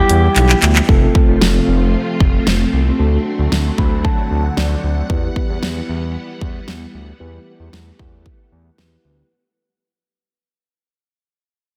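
A punchy, up-front electronic pop kit with a fat snare, kick, hi-hat and handclaps drives this bright, wistful synth-pop fragment at 114 BPM, entering at 0.1 s alongside a smooth, sawtooth-edged synth bass and playing a drum fill from 0.4 s. A clean, direct-recorded electric guitar plays a brief delayed melody note that ends by 0.6 s. A mellow tine electric piano adds accompaniment and a short fill, while a swirling, warbling vintage string machine with ensemble chorus and phaser holds sustained chords through Em, F, D7 and Emadd9, all washed in lush hall reverb as the piece fades out from 0.9 s.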